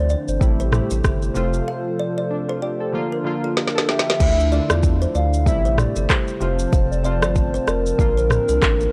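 A dry, gritty recording with cassette-tape and transformer saturation frames this sultry, smooth afrobeats passage in D minor at 95 BPM, its sixteenths swung, cut from a longer piece. Up front, an electronic afro-pop kit with a deep kick, woody snare, rim click, shaker, handclaps, toms and crash carries 12-bit sampler grit alongside a thick, saturated sub bass, while a hollow, clarinet-like square-wave lead with vibrato and chorus sings the melody over detuned analog keys with a filter sweep and a dark, flute-like pad. A bright, woody kalimba riff echoes through analog delay in the background, a break runs from 1.7 to 4.2 seconds with a drum fill at its close, and the chords move through Am7, F and Bb to a Dmadd9.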